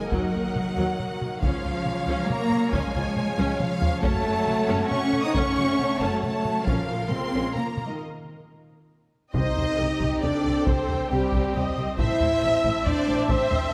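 Relentless and epic, this cinematic orchestral film cue in 3/4 at 137 BPM sets a distant, woody violin melody against a focused second violin line, expressive viola accompaniment with portamento, and background horns, strings and trombones holding sustained chords over dark cellos and close double basses, while a dry, heavy-sticked taiko ensemble drives the music, round timpani strike at 9.4 seconds, and a moderate scoring stage reverb surrounds the music.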